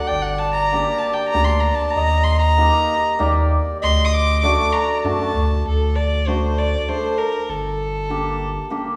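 Festive yet soulful, this klezmer excerpt in 3/4 features an up-front, gut-string violin with light vibrato carrying a solo melody over a mellow, round single-reed accordion second line that stops at 5.3 seconds, a deep, saturated sub bass, and a shimmering hammered dulcimer entering at 0.7 seconds, all heard from further back in a recital hall with a 1.4-second reverb tail.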